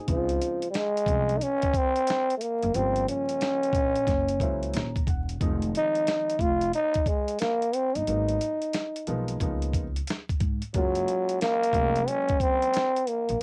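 Jazz-hop at a relaxed, swung 90 BPM in 4/4, where a raspy, growling trombone carries the melody up front over a woody pizzicato upright bass, a gritty, compressed sampler-style drum kit with a thumpy kick and cassette-tape grain, and a dark, mellow, intimate grand piano whose audible action noise and brief fill from 4.4 to 5.4 seconds sit amid lush chords like Dbmaj9 and Gb7#11, all framed by light reverb and vinyl crackle in a warm home-cassette sound.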